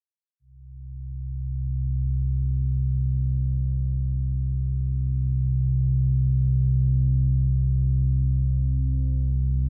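A deep, rumbling drone with a dark, slowly blooming tone sits up front from 0.8 seconds to the end of this unsettling, ominous ambient fragment in free time, tuned to A4 = 438 Hz and hanging in a moderate cathedral reverb that lingers for 6.2 seconds.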